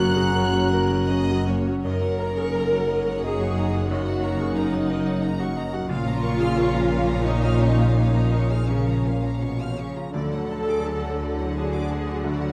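Uplifting and hopeful, this rubato cinematic orchestral cue in F# major at 78-92 BPM in 3/4 sets a vibrato-rich violin section melody against a close, focused second violin line, with a clear oboe, dark clarinet and airy flute sounding only in the first 1.5 seconds alongside brief, very quiet, dry timpani, while a brilliant baby grand piano, lush violas, ringing fingerpicked harp, mellow French horn chords, and bowed cellos and double basses fill out the harmony in a moderate scoring-stage reverb.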